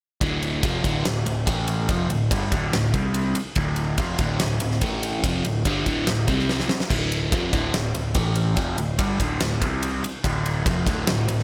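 Energetic and swaggering, this hard rock excerpt charges along at 144 BPM in a straight 4/4, built on an overdriven, double-tracked semi-hollow guitar riff with a phaser, sitting up front and cycling through D5, A5 and C5 power chords. A huge arena drum kit with bright cymbals, a fat snare and a punchy kick drives hard alongside it, with a quick fill at 6.5 seconds. Underneath, a fuzz-soaked picked electric bass rumbles in the background, all set in a light reverb.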